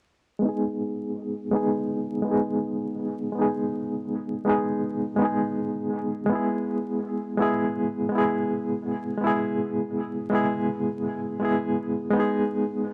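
Cut from a longer piece, this hypnotic, cinematic trip hop at 82 BPM in G# minor features only a barky, reedy electric piano playing accompaniment up front from 0.4 to 12.9 seconds, lightly overdriven with fast tremolo, 12-bit sampler grit, tape echo and a low-pass filter sweep as it moves from G#m to E and back, all set in light reverb within a dry, gritty hardware recording dusted with vinyl crackle.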